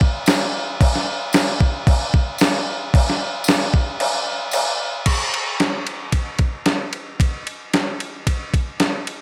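Rock with a dreamy, hazy mood, carried by an up-front, clean 12-bit sampler-style drum machine whose thumpy kick, fat snare, crash and ride cymbals sound tape-warm and re-recorded in a large room, while a jingly acoustic tambourine sits distant in the background until 4.6 seconds, a break arriving at 4.0 seconds before a new section begins at 5.1 seconds, with light reverb and digital ambience around the mix.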